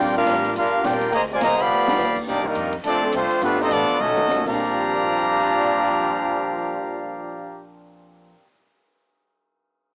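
Big band swing with a brassy, joyful mood, this short cut from a longer piece sets a clear, tight trumpet section on the melody up front, with a bright trombone section carrying a second line and another very quiet trombone section holding soft chords until 2.3 seconds, while an intimate grand piano with audible action noise accompanies in the background, a woody pizzicato upright bass plays underneath, and a swinging drum kit with a high-tuned snare and punchy kick plays from 0.3 to 4.5 seconds with fills at 1.7 and 4.0 seconds, the whole heard as a home cassette recording through a small speaker.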